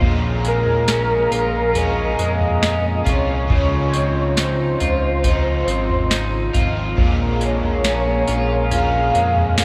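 Haunting and melancholic, this brief dream pop fragment drifts over a soft vintage rhythm box with a deep kick, crisp snare, tambourine and toms, anchored by a glossy, chorused synth bass. A crunchy overdriven guitar with harmonic tremolo, a twangy electric guitar at the edge of break-up picking chorused, delayed arpeggios, and a hollow, flute-like pad holding dark sustained chords move from Bbm7 to Dbmaj9 and back. From 0.5 s a velvety synth lead with vibrato carries the melody, and the whole mix is soaked in a cathedral reverb.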